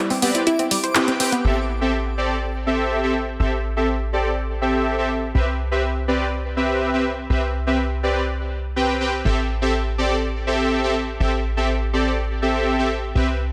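Progressive house at 123 BPM in A minor, this dreamy, emotional excerpt opens with a brief break in which a round, nasal analog pluck spins arpeggios through chorus, phaser and tape echo, joined by a twinkling granular texture shimmering in the background and an overdriven deep house drum kit with crash, handclaps and filtered hi-hats, all three parts stopping by 1.5 seconds after a band accent at 1.0 seconds. A smooth, detuned supersaw plays sustained stabs from 0.2 seconds onward, colored by cassette tape and tape echo, while from 1.4 seconds a punchy, funky, wave-folded analog bass carries the low end as the harmony moves between Cmaj7 and Am7. The dense, heavily limited mix sits in a moderate digital room reverb.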